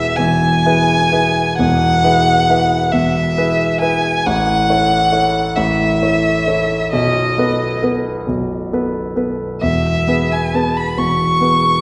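Heard from further back in a wet scoring-stage reverb with a softened top end, this brief, lyrical romantic classical passage in a rubato 12/8 sets a single bowed violin, focused and smooth with vibrato, singing the melody up front over an intimate, natural-sounding concert grand piano whose deep bass and audible action noise give its up-front accompaniment a warm presence.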